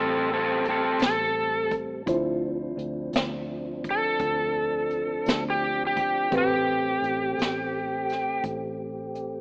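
A mournful, brooding slow blues in A minor moves at 56 BPM in a straight 12/8, cut from a longer piece and resting on Am7, then Dm7 from 2.1 seconds, before returning to Am7. An overdriven slide guitar carries the melody up front with a bright, biting edge and falls silent at 8.4 seconds, while a dark, mellow concert grand piano accompanies with intimate action noise, deep bass and a somewhat boxy tone. A tonewheel organ holds sustained chords, lightly overdriven with vibrato, key click and a slow rotary speaker, and a vintage foam-muted electric bass adds a round, punchy low end well beneath the other parts. Jazz brush drums enter at 0.7 seconds with a high-tuned snare, boomy kick and hi-hat, sitting up front in a studio room. The whole is bathed in a moderate plate reverb and carries the rough feel of a home demo heard through an AM radio.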